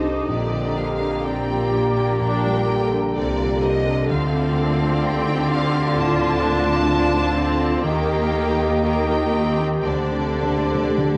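Steeped in a wet scoring-stage reverb and a worn, warbling cassette-tape pitch drift, this moving, sorrowful cinematic film score in G minor unfolds in a rubato 4/4 around 57-65 BPM, as a rich, lush violin section with vibrato carries the melody alongside a very quiet, soft-attack second violin line, a distant, roomy solo clarinet, a dark cor anglais and an airy flute ensemble, while a clear viola section, a mellow grand piano in the background, a loose French horn section holding sustained chords, an intense cello section and a smooth double bass section carry the harmony through Gm/Bb, Dm7, Eb and D7sus4 until close, dry timpani enter with a fill at 9.9 seconds.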